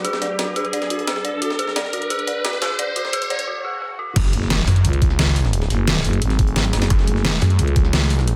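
A lightly reverberant, high-passed mix carries this dark, futuristic drum and bass excerpt in F# minor at 175 BPM, opening on a swarming, granular drone of sustained chords and an eerie, inharmonic FM bell playing chorused, dub-echoed arpeggios through a low-pass filter sweep. Layered drums run throughout: a deep-snared electronic kit with crash and hi-hat, and a gritty, compressed breakbeat kit in the background, while an electronic riser and swell build toward the drop. At 4.2 seconds the drop hits with an impact, a knocking, overdriven kick and two up-front basses: a thick, tube-saturated FM growl and a snarling, bright, distorted saw that appears in two brief sustained passages.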